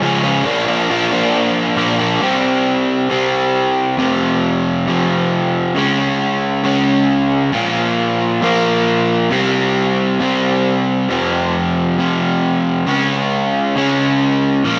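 A crunchy, overdriven electric guitar plays alone and up front, picked and double-tracked with spring reverb and analog delay, carrying this dark, brooding rock passage at 135 BPM in a straight 4/4, tuned slightly below standard pitch. After a short opening on a Bb chord, the main passage from 2.2 seconds cycles through C5, F5, Db5 and Bb5 power chords in the guitar's low-to-middle register. A lush hall reverb gives the warm tone a big arena sound, and the piece is cut from a longer performance.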